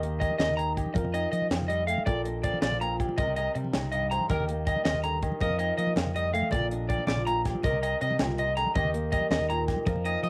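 A fingerpicked flamenco guitar, with a cassette-tape grain, opens this carefree, sunny highlife groove at once alongside a round, dark fingered electric bass, a dry, tight funk drum kit sitting up front with a high-tuned snare and tight kick, and soft-handed, damped congas in the background. At 0.2 seconds a twangy electric guitar at the edge of break-up enters up front with picked arpeggios between Bb4 and Bb5, colored by cassette tape and tape echo, while ringing agogo bells join far back in the mix. The tempo sits at 108 BPM in a straight 12/8, and the harmony cycles through Eb, F7sus4, Bbmaj7 and Cm7 throughout this cut from a longer piece. The bass moves between Bb1 and F3 beneath the acoustic guitar's span from G2 to C5, and the thick-skinned, medium-tuned congas add a warm, close body to the rhythm. Light reverb and a homemade cassette sound give the whole track an intimate, sun-faded character.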